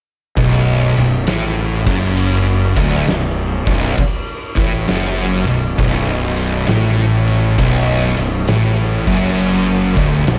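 From 0.4 s, two thick fuzz guitars, a fuzz fingered electric bass and an oversized low-tuned drum kit start together on a brooding, heavy riff in B minor at a slow 67 BPM with a swung 4/4 feel, holding on Bm in this cut from a longer stoner and doom metal piece. One distorted, picked guitar sits up front with a warm tone while the other stays dark in the background, and the overdriven bass is growly and direct, pushed forward beneath them. The drums play kick, snare and ride, with a punchy kick and fat snare sounding saturated and gritty in a bright stone room, and a small room reverb frames the whole band.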